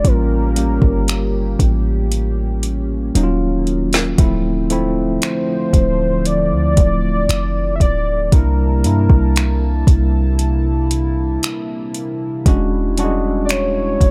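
A slow, straight four-beat groove anchors this late-night, moody contemporary R&B excerpt, with an electronic drum kit sitting up front: a soft kick, woody snare, metallic hi-hats and finger snaps, given a small-room feel, and a drum fill from 3.1 to 4.2 seconds. A deep, boomy 808-style bass carries the low end with a sine tone, a noise layer and a mellow decay, and it is also placed close. A clean tine electric piano plays the accompaniment through its built-in speakers, while a shimmering, retro pulse-width pad holds sustained chords that evolve alongside it. The melody belongs to a velvety synth lead of detuned sawtooth and triangle voices, smoothed with vibrato, chorus and delay. The harmony moves from a tense A7b9b13 through Ebm7 and Dm7 to C13 and E13, and the dark, dry production keeps the whole passage intimate.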